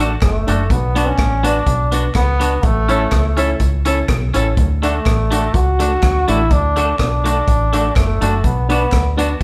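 A twangy, compressed electric guitar with tape echo, a woody upright piano playing stabs and a deep, round dub bass open this cheerful, upbeat ska excerpt, joined at 0.2 seconds by a brilliant, forceful trombone melody with light vibrato, a swinging big-band drum kit with a punchy kick, hi-hat and rim click, and very quiet, crisp group handclaps, captured as a band playing live together in one large studio room with moderate reverb.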